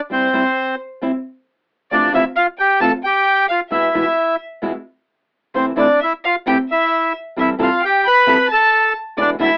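Set in 4/4 at 132 BPM with a rubato feel, this short excerpt of a passionate, melancholic tango in A minor moves through C/G, Fmaj7, E, C6 and Am7/C over about 9.6 seconds. A reedy, bright bandoneon carries the melody up front, sounding close-miked, dry and full. Behind it, a single bowed violin plays a soft-attacked second line with expressive vibrato and portamento. A fingerpicked acoustic flamenco guitar provides the accompaniment, placed forward and carrying a warm tone. Each part carries a cassette-tape character, and the whole piece sits in a moderate booth ambience with the lo-fi feel of a home cassette recording heard over AM radio.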